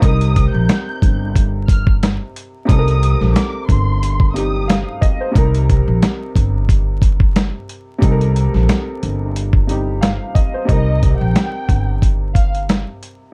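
Moody and gritty, this dusty boom-bap hip-hop excerpt rides an overdriven, sampler-style drum kit with a thumpy kick, while a growly upright bass and a slightly detuned, worn upright piano sit beneath a dark, lush bowed violin section whose expressive, vibrato-laden melody sounds with a slapback echo until 4.8 seconds and returns at 10.7 seconds, all wrapped in a dark production with vinyl crackle and little reverb.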